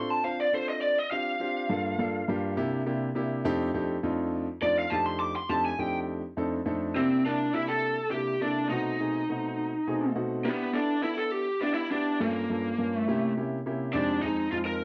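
Set in 6/8 with a straight feel at 69 beats per minute, counted in dotted quarters, this slick, funky jazz excerpt sits in F mixolydian. An electric lead guitar, pushed through a small cranked amp, carries the melody from Bb3 up to D6 with a lo-fi, overdriven, picked tone and a slapback echo, soloing up front for the first 7.0 seconds. A clear grand piano with long sustain plays the accompaniment throughout, also placed up front, and steps forward with a brief fill between 9.6 and 10.4 seconds. The harmony opens on Dm7, moving through Gm7 and C7 to F13, then shifts to C9, B7b9, Em7, Gm7b5 and C7b9 before settling on Fm7. The sound is a dry, close 1970s-style studio recording touched with light reverb.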